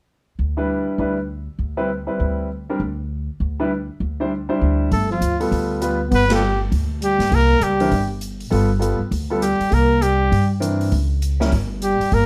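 Small-group swing and bop jazz at a brisk 200 BPM in 4/4, this playful, swinging fragment is cut from a longer piece and sits in G mixolydian. A woody, thumpy upright bass plucks up front from 0.4 seconds, joined almost at once by a clear, natural grand piano comping through chords such as Cmaj7 and D9sus4. At 4.9 seconds the horns and drums arrive together: a brilliant, forceful trumpet carries the melody close and punchy with light vibrato, while a breathy, mellow trombone plays a second line from farther back in the room, its notes scooped. The drum kit sits low in the mix, airy and polished, with hi-hat, ride cymbal, a medium-tuned snare and a punchy kick, and the band hits a shared accent at 6.3 seconds. A moderate studio reverb gives the small group some space as the harmony moves through G9 and C9 before landing on an unsettled C# chord near the end.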